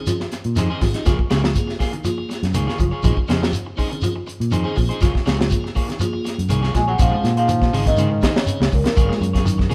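A defiant, funky afrobeat groove opens with a piping, lightly overdriven tonewheel organ on a slow rotary speaker and a twangy, clean guitar picking arpeggios through spring reverb, joined almost at once by slightly broken-up guitar stabs, a dry, up-front funk kit with a high-tuned snare, a grainy shekere and a punchy, amped fingered bass, before a round, soft-mallet marimba melody and a brilliant, vibrato-laden trombone second line arrive at about 6.7 seconds, all sharing a moderate stone room.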